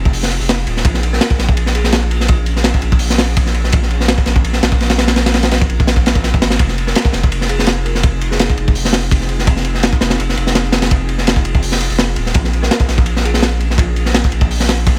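A gritty, up-front studio sound opens this frenetic yet nostalgic drum and bass and jungle excerpt at 167 BPM, where a crunchy, saturated acoustic breakbeat kit with dark cymbals and a tight kick drives over a deep, thick sub bass, while an airy, detuned pad with ensemble chorus and reverb sustains Fm7 and Bbm7 chords in the background, and a woody, rustic marimba with dub echo plays short phrases from 1.1, 6.9 and 12.6 seconds.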